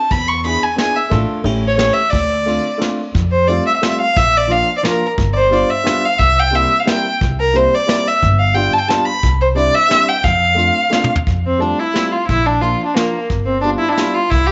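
Bittersweet and whirling, this brief excerpt from a longer musette waltz swings at 178 BPM in 3/4, moving from D minor into F major at 3.1 seconds as a rich, vibrato-laden bowed violin with slapback echo carries the melody up front over a dark pizzicato upright bass with steel strings, an intimate, woody upright piano with audible action noise, and a vintage brush kit with dark cymbals and a punchy kick that plays a fill at 10.9 seconds, all set in a small room with light reverb.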